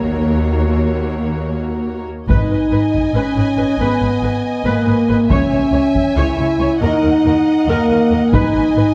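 Dark and dramatic, this short cut from an epic orchestral film score in G# minor moves at 278 BPM in eighths in an uneven 7/8, opening with a build-up of lush, vibrato-rich strings, where a soft-attack violin line rides over a distant viola section, focused cellos in the background and expressive double basses, before at 2.3 seconds a second, smooth and even violin section takes the melody, a mellow, up-front French horn section holds sustained chords, and a vintage, band-limited taiko ensemble struck with hard sticks joins, all set in a moderate scoring-stage reverb as the harmony moves from D#m7 through G#madd9, C#m and D#m to land on G#m.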